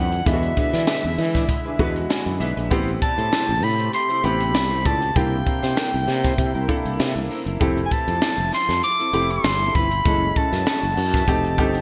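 A breathy, intimate soprano saxophone carries the melody up front over a baby grand piano with subtle chorus, a thick detuned sawtooth pad, a dark, clean electric guitar riff with analog chorus and a growly fretless bass; a crisp fusion drum kit with gated reverb and a punchy kick joins at 0.1 seconds, and a jingly tambourine enters at 0.9 seconds in this polished, nocturnal 1980s jazz-funk pop fragment at 98 BPM, which moves from E7 to F9 and features a grand piano fill at 1.5 seconds.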